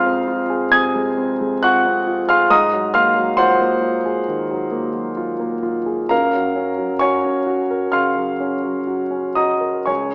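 Heard through a small-speaker sound with a wet recital hall reverb, this brief fragment of a longer impressionist classical piece feels dreamy and hazy, its rubato phrasing drifting freely in 4/4. A concert grand plays solo from 0.0 to 10.1 s, intimate and up front, with deep bass down to Db2, a polished upper reach to Ab6, long sustain and audible action noise. The harmony glides from Fm7 to Ab13 at 2.5 s and settles on Gbmaj7 at 6.1 s.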